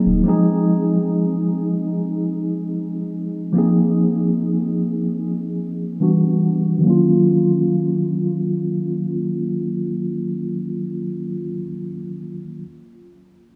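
A mellow, clean tine electric piano sits up front in this longing, moody R&B fragment, its low-pass filter sweeping through the first 6.8 seconds as it moves from Fm7 through Bb7sus4 and Em7 to Ebm7, the whole dreamy mix soaked in a huge ambient reverb.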